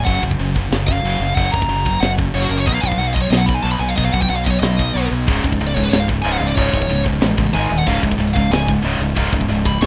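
Aggressive and heavy, this heavy metal excerpt charges along at 185 BPM in a straight 4/4, with a dark, distorted lead guitar soloing up front across the whole passage over chords moving from F# to B and on to C#5 and G#5. A growling, overdriven fingered bass sits prominently beneath it, while a tight metal drum kit with bright cymbals, a high-tuned snare and a tight kick drives the pulse, and in the background a scooped high-gain guitar and a double-tracked fuzz guitar grind out the riff. At 5.3 seconds a further high-gain distorted guitar joins the riff, thickening the rough, small-room home-demo sound of this cut from a longer piece.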